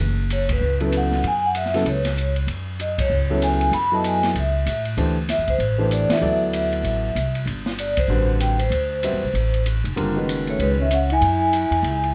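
Lightly reverberant and cool, this hypnotic modal jazz excerpt swings at 192 BPM, with a woody, thumpy pizzicato upright bass up front from the start, a ringing vibraphone carrying the melody over a clear, long-sustaining grand piano and an open drum kit with dark cymbals and a boomy kick, band accents punctuating the suspended chords on F#, D and F# again, until a dark alto saxophone with scooped notes slips in at 10.5 seconds.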